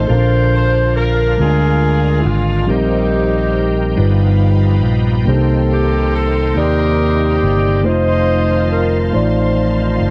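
A round, punchy fingered electric bass sits up front in this slow gospel excerpt, which moves at 46 BPM in a straight 6/8 in Bb major with a jubilant yet reverent mood. Over it, a breathy alto saxophone carries the melody in subtone with scooped notes, sounding distant and roomy in a jazz style. A tight saxophone section with light vibrato joins the melody from 0.6 to 9.1 seconds. A mellow tine electric piano supplies clean accompaniment through its built-in speakers, and a shouting tonewheel organ holds full chords with light overdrive, chorus vibrato and a slow rotary speaker. Far in the background, a dark, woody symphonic string section sustains lush bowed chords in plate reverb. The harmony moves from Bbmaj7 through Eb6/Bb and G7alt to Cm7 and F7, heard in a moderate studio room with the grain of cassette tape.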